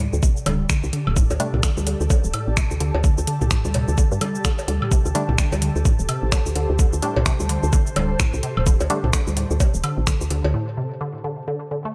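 A swung 128 BPM minimal techno groove in 4/4 is driven by an overdriven, knocking electronic kick up front, with metallic hats, finger snaps and shaker from a garage kit, and tape-warm cowbell, congas, woodblock and toms that sound re-recorded in a small room. A soft, round FM bass with a woody tone pumps beneath a juicy, squelchy blip pluck riff with phaser and tape echo, while an ethereal pad with ensemble chorus fades in over a Dsus4 and crisp, detuned wavetable chord stabs with tape echo recur from 5.1 to 9.0 seconds. The hypnotic, quirky excerpt drops to a break at 10.5 seconds, leaving the pluck alone until 11.9 seconds.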